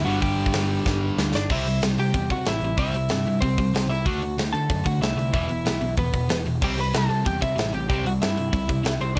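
Upbeat and energetic, this punk rock cut races along at 187 BPM in a straight 4/4, moving through G5, C, D and E5 chords with little reverb. A crunchy, double-tracked overdriven guitar riff and a bright, amped, overdriven picked bass drive beneath a warm, slightly broken-up, compressed lead guitar melody, while a tight metal drum kit sits up front with a taut kick, medium-tuned snare and big-room sparkle on the cymbals. A sludgy, double-tracked distorted guitar murmurs in the background only until 1.3 s, and a drum fill from 0.9 s carries the music into its main section at 1.5 s.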